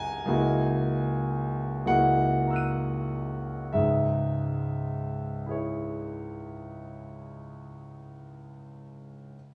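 In a free, rubato 6/8 that drifts between 30 and 41 BPM on the dotted quarter and slows through its first 3.7 seconds, this brief fragment of impressionist classical solo piano unfolds in C# dorian with a wistful, mysterious air, tuned to A4 = 438 Hz. A concert grand, placed up front with deep bass, an open character and long sustain, spans C#2 to D#7, voicing an F#13/C# at 0.3 seconds before settling onto C#m as a new passage begins at 3.7 seconds. A wet recital hall reverb with a 1.6-second decay surrounds the instrument, giving the phrases a lingering, spacious halo.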